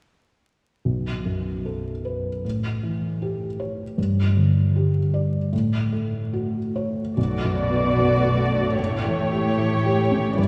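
Longing and sorrowful, this short cut from a longer cinematic film score unfolds with a loose, rubato feel in 4/4. A felt-muted upright piano opens the accompaniment at 0.9 seconds, mellow and intimate, sitting up front with its action noise clearly audible as the harmony moves from B5 through A7 and G5 to F#m/A. At 7.2 seconds a con sordino string section enters on Bm7: a veiled, distant-sounding violin melody with soft attacks, a close second violin line beneath it, violas murmuring in the background and cellos carrying the bass, all bowed with vibrato and a dark, lush ensemble tone. The piano and strings continue together over an A7 chord until the passage ends at 10.5 seconds. A wet church reverb surrounds the music, and vinyl crackle lends the recording a worn, nostalgic patina.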